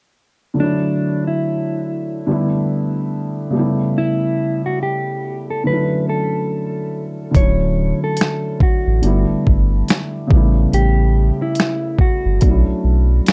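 A soft, boxy felt-muted upright piano with cassette-tape colour opens this mellow, dreamy lo-fi hip hop excerpt on chords such as Dmaj7, G69 and A7, joined almost at once by a dark, clean electric guitar melody through analog delay and plate reverb, until at 7.3 s a gritty, overdriven sampler-style drum kit with thumpy kick, fat snare, hi-hat and finger snaps arrives in a swung groove alongside a deep, thick, saturated sub bass, both up front.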